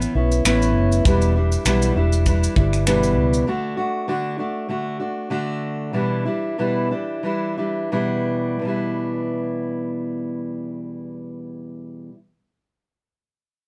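Reflective and wistful, this short acoustic pop piece, cut from a longer work, rests on a light swung sixteenth-note feel. A fingerpicked steel-string acoustic guitar carries the accompaniment throughout, its fresh strings sounding close and up front, with audible finger squeak and an auditorium-like body. For the first 3.4 seconds a vintage muted electric bass adds a dark, round, foam-muted tone, while a polished, airy drum kit of finger snaps, punchy kick and shaker plays until 3.5 seconds. From there the guitar continues alone as the pulse slows down until 8.6 seconds, moving from D to Em7 before a brief new section begins. The band sounds as if playing together in one room, with a moderate studio reverb giving the sound a gentle sense of space.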